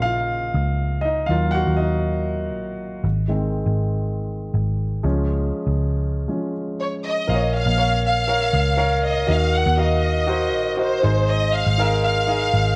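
This piano-driven pop excerpt moves at 120 BPM in a straight 4/4, with an anthemic, uplifting mood. A concert grand piano with a deep low end carries the accompaniment throughout, sitting up front alongside a vintage muted, picked electric bass whose tone is dark, round and amped. At 6.8 seconds a lush, bowed violin section enters with the melody, its warm, expressive ensemble sound marked by vibrato, portamento and a smooth top. The harmony cycles through Bbm, Ebm, Ab and Db, then returns to Bbm at 7.3 seconds as the second section begins. A moderate echo-chamber reverb gives the whole mix a roomy studio sheen.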